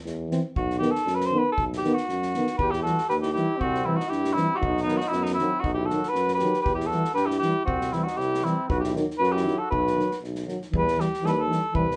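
A mellow cor anglais carries the melody up front with light vibrato in this fiery, virtuosic Balkan brass band fragment in 2/4, played in a classical style over a clear, vintage tuba bass. Two euphoniums fill the accompaniment, one dark and close-miked with a soft attack, the other warm and sitting in the background. An acoustic kit with a punchy kick and a medium-tuned snare, played with bundle sticks, drives the straight feel, while a flugelhorn with a smooth top adds a second line from 2.6 to 10.2 seconds, the whole band sounding live in one room with moderate studio reverb and a rolled-off top end.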